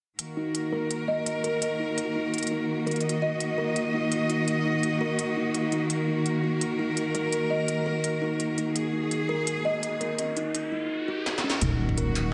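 This recording has a dreamy sound, soaked in plate reverb with its top end rolled off into a soft haze. It is a heavy, spacious half-time drum and bass excerpt. A lush, bowed cello section holds sustained chords up front with rich vibrato, pumping under sidechain, while an industrial drum kit of clanging snare, smooth hi-hats and struck metal sits close in a small room with a tape-warm edge. A woody, mellow kalimba rings out arpeggios through vintage 12-bit sampler grit, a low-pass filter and analog delay. A riser enters at 9.8 s, a drum fill follows, and at 11.6 s an impact lands alongside a growling, buzzy 808-style bass and a knocking, layered electronic kick tucked into the background.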